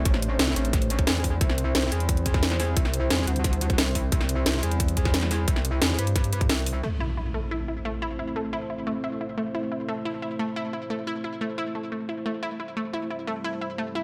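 Aggressive and mechanical, this excerpt of dark technical drum and bass drives at 177 BPM in a straight 4/4 feel, set in A minor and moving between A minor and C major chords. It opens on a full drop: a tight, layered electronic kick, re-recorded in a small room, sits up front beside an overdriven kit with a cracking snare, bright hi-hats and crash cymbals, all softened by low-pass filtering. Beneath them a metallic FM wobble bass growls with a fast attack, saturated and compressed with chorus. A deep, moody pad of detuned sawtooth and triangle tones with a sub octave holds sustained chords throughout, its slow attack pumping against the sidechain and coloured by chorus. The kick drops out at 6.5 seconds, and at 6.8 seconds the bass gives way to an electronic impact and a round analog pluck that spins arpeggios through chorus, sidechain pumping and digital delay. Light reverb and digital ambience give the mix a compact space.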